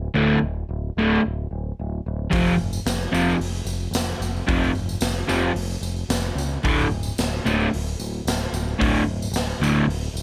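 This menacing, gritty garage rock excerpt opens at 0.0 seconds with a growling, overdriven electric bass, picked and amped up front, joined almost at once by a crunchy, double-tracked overdriven guitar playing the riff on a D5 power chord. At 111 BPM in straight 4/4 and D minor, the riff moves to F5 at 2.3 seconds, when a raw acoustic drum kit of hi-hat, punchy kick and medium-tuned snare arrives alongside a jingly tambourine. The kit sounds saturated, with a rolled-off top and a pumping, bright stone-room character. The tambourine sits lower in the mix in its own live room. The harmony returns to D5 at 6.7 seconds, and the overall mix stays dry, with little reverb.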